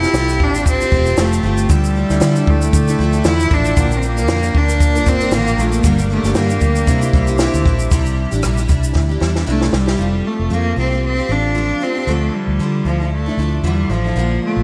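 A bright, biting bowed cello with light vibrato and a touch of delay carries the melody in this carefree, easy-going acoustic pop excerpt, over a full-bodied, double-tracked jumbo steel-string guitar with slapback echo, a dark, round, foam-muted electric bass, a clean tonewheel organ through a slow rotary speaker in the background until 7.9 seconds, and a dry cocktail drum kit with a punchy kick and high-tuned snare that plays a fill from 9.0 seconds before dropping out at 10.0 seconds, all set in a big arena-like space.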